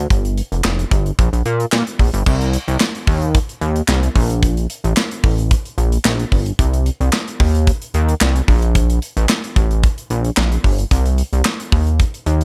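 A chorused synth bass opens this slice of early-eighties boogie funk, with a modern studio drum kit joining at 0.1 seconds, setting a funky, slick groove at 111 BPM in a straight 4/4 and C dorian. The bass sits up front, blending pulse and sawtooth waves with pulse-width modulation and a filter sweep, so its glossy, retro tone keeps evolving while its fast attack and sustained notes carry the low end from F1 to Bb2. The drums are polished and punchy, with a medium-tuned snare, handclaps, hi-hat, crash cymbal and kick set in an airy small-room sound and treated with gated reverb. The overall mix is dry and close. The arrangement moves into a new section at 2.3 seconds, and both parts run together until the fragment ends at 12.4 seconds.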